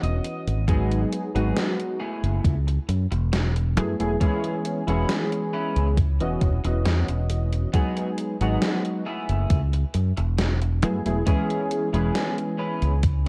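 Vaporwave with a hazy, nostalgic mood, this short cut from a longer piece moves at an unhurried, straight pace through a looping cycle of lush minor-eleventh and sixth chords. A clean electric guitar fill opens the first 0.7 seconds before the electronic kick drum arrives, thumpy and tape-softened. Warbling lo-fi synth keys carry the accompaniment up front, their detuned pulse and sawtooth tones striking with a fast attack and then decaying through subtle chorus, 12-bit sampler grit and tape echo. Underneath, a bright, growly fingered electric bass sits direct and forward with tube saturation, while a gated 80s drum machine supplies hi-hat and a snare steeped in gated reverb. A slightly broken-up electric guitar plays a riff low in the mix, bathed in lush chorus and tape echo until it drops out at 12.9 seconds. The production is dark and cassette-coloured, with little room sound.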